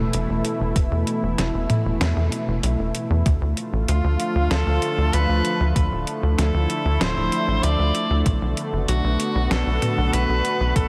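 An edgy, forceful tenor saxophone enters at 3.9 s with a vibrato-laden jazz solo through analog delay, set over a driving, nocturnal synthwave groove at 96 BPM in 4/4, where a lush, detuned unison pad holds chorused chords that pump with sidechain, a tight, punchy sawtooth sequencer bass with filter pluck and tube saturation drives beneath, a tape-warm 12-bit drum machine supplies hi-hat, fat snare and toms, and an overdriven, thumpy electronic kick joins at 0.8 s, the dreamy mix soaked in cathedral reverb as the chords move from Esus4 to Dm to Bm7.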